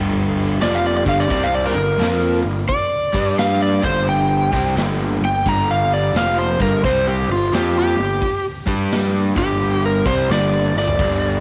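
A small room's light reverb frames this heavy, smoky slice of blues rock and southern rock, cut from a longer piece in G minor at 87 BPM with a swung 4/4 feel. A dark, overdriven slide guitar sits up front and carries the solo with tape echo, over a crunchy, double-tracked riff guitar and a fuzz-driven bass with punchy tube saturation. A raw garage drum kit comes in at 0.4 seconds, its gritty kick and snare ringing in a pumping stone room, and it plays a short fill at 10.6 seconds.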